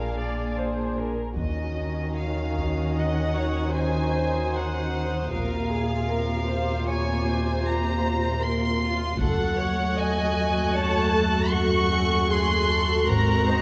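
A warm, up-front chamber violin section carries the melody of this tense, ominous suspense cue in five-beat metre, bowed sul tasto with light vibrato above a dark, distant second violin line, floating violas, woody cellos and a deep, clean sine sub bass drone. From 1.4 s an intimate double bass section and a high, smooth-topped violin texture join in the background, a close and dry taiko ensemble strikes with heavy sticks at 1.4 and 9.2 s, and a very quiet, ringing harp enters at 2.2 s. A moderate concert hall reverb surrounds this excerpt cut from a longer piece.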